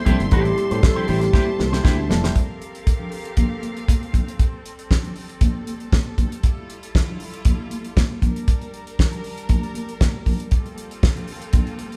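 Driving and glamorous, this disco cut moves at 118 BPM in a straight 4/4, set in G dorian and taken from a longer piece. In the opening 2.4 seconds, a dark concert grand piano with audible action noise sits in the background, alongside a clean, scooped electric guitar through an envelope filter, a growly, punchy fingered bass, and a soft-attack, hollow alto flute carrying a brief melody. A polished, damped 70s drum kit with a fat snare and tight kick sits up front, and it plays a fill from 1.3 seconds just before the chords move to Gm11. From there, the drums, high-tuned congas played with soft hands, and a lush, bowed studio string section with vibrato carry on through harmonies of Am7, Fmaj9 and Bb6 until 12.0 seconds. The band sounds as if it is playing live in one room, with light reverb.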